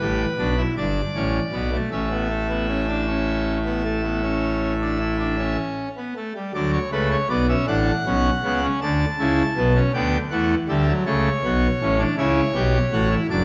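Stately and elegant, this is a brief cut from a longer classical piece, a baroque-style three-part fugue for solo pipe organ. It moves at 53 beats per minute in 12/8 with a straight feel, tuned slightly low to A4 = 438 Hz. The full organ sounds majestic and brilliant, its mixtures and baroque voicing giving a gleaming edge, with audible chiff on the pipes and the instrument placed up front. The organ covers a span from F#1 up to A5 across the 13.4 seconds, with the harmony moving from Em7 to A, then to D at 6.5 seconds where a new section begins, before returning through Em7 and A. A reverberant recital hall surrounds the sound, lending a resonant tail of about 1.4 seconds.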